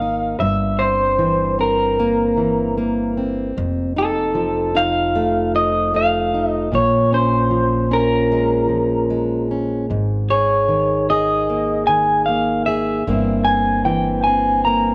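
A moderate plate reverb with a 2.8-second tail gives this tender, nostalgic acoustic folk-pop ballad excerpt a soft glow, moving at 76 BPM in a straight 4/4. Up front, a dark, slightly broken-up electric guitar through a small old amp carries the melody with a lo-fi, compressed tone and harmonic tremolo, while a full-bodied jumbo steel-string acoustic guitar, plugged in and fingerpicked, supplies the accompaniment. Beneath them, a woody pizzicato upright bass sits low in the mix as the harmony moves from C7/G through F7, Bbm7 and Absus2 before returning to C7/G at 13.1 seconds.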